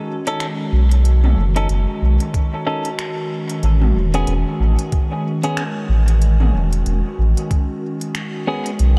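The recording has a hazy, spacious character with light reverb, and this cut from a longer ambient dub piece moves at an unhurried 93 BPM in 4/4 with a gentle swing on the sixteenths. A warbling, nostalgic pad holds sustained chords throughout, its detuned, lo-fi tone softened by chorus, phaser and built-in reverb as the harmony shifts from B7 to Amaj7 at 3.6 seconds. A clean, fingered electric guitar adds compressed stabs that trail off into dub echo, while an organic electronic kit of finger snaps, smooth hi-hats and toms sits farther back, tape-tinged and re-recorded in a large room, its hits also thrown into echo. Up front, a deep, round sine sub bass with tube saturation anchors the low end from 0.7 seconds. A muffled, thumpy, pitched-down kick joins at 2.3 seconds and drops out at 7.7 seconds, giving the middle of the passage a heavier pulse.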